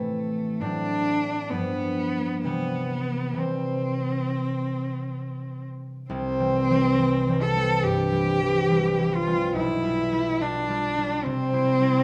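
Tender and serene, this romantic classical duo in C major moves with a rubato feel at 62-73 BPM, as a single bowed cello sings the melody with vibrato, portamento and an expressive, distant warmth while a mellow, ringing concert harp supplies fingerpicked accompaniment, both sitting up front in close, detailed sound within a moderate recital hall reverb, the harmony settling from A minor onto C by 2.4 seconds and returning there at 11.3 seconds in this short cut from a longer piece.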